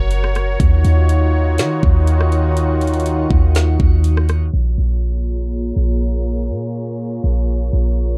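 A deep, boomy 808-style bass with a clean sine tone sits up front in this short atmospheric cloud-rap excerpt at 122 BPM in half-time, moving through Gb and Ebm7 toward Bbm7 in B-flat minor. An electronic trap kit with a knocking kick, woody snare, metallic hats and rim clicks drives the opening and drops out at 4.4 seconds. A detuned, vintage sawtooth pad carries sustained chords throughout with chorus and sidechain pumping, and a filter sweep runs from 4.5 seconds across a spacious, ethereal second half within a dark, dry mix.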